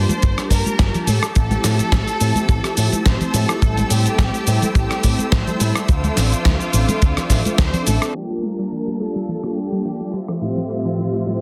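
Sleek and groovy, this nu-disco clip sets a rich, distant violin section's melody with tape echo over round, brassy synth brass with chorus and sidechain pumping, while a clear studio string section holds lush chords in the background. A dark, punchy picked electric bass with an envelope filter, a dry, tight kick, a gritty sampler-style kit of hi-hat, rim click, shaker and snare, and soft, damped congas drive a swung groove, with a filter sweep running across the whole clip. The kick drops out around 7.7 seconds and the bass and congas around 8.0 seconds. At 8.2 seconds a full-bodied, detuned unison pluck enters with arpeggios, all inside a dense, heavily limited master with light small-room reverb.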